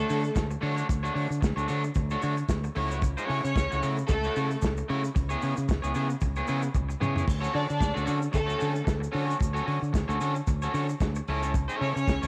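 A swung disco groove at 113 BPM in 4/4 drives this glamorous, danceable 12-second cut from a longer piece, anchored by a punchy fingered electric bass and a dark, tight-kicked soul drum kit whose rolled-off cymbals and medium-tuned snare sit up front, with a drum fill at 6.7 seconds leading into the repeat of the phrase. A twangy, slightly broken-up electric guitar with tube saturation and spring reverb plays accompaniment alongside a lush, bowed string section playing a second line with vibrato, while a grainy tube shaker sits in the background over chords moving from Dmaj7 through F#m7/C# and C#m7. The home cassette recording is dry, with tape coloring the strings, guitar and drums.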